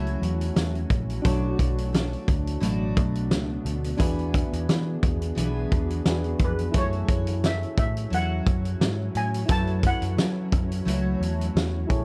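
A loose, lightly swung 87 BPM groove in 4/4 drives this mellow, hazy indie and bedroom pop excerpt in F# minor, anchored by an up-front acoustic drum kit with a fat snare, punchy kick and gritty, rolled-off top, over a round, foam-muted vintage electric bass. A jumbo steel-string acoustic guitar picks full-bodied accompaniment through analog chorus and warbly pitch drift, joined by soft, decaying electric-piano-like synth keys with cassette-tape chorus and a very quiet, cloudy granular pad sustaining blurred chords through F#m7, Bm7 and E7. A shimmering, band-limited steel pan, played with hard rubber sticks and wrapped in lush chorus and tape echo, sounds briefly at the start and returns with the melody from 6.4 to 11.9 seconds, all within a dark production and light reverb.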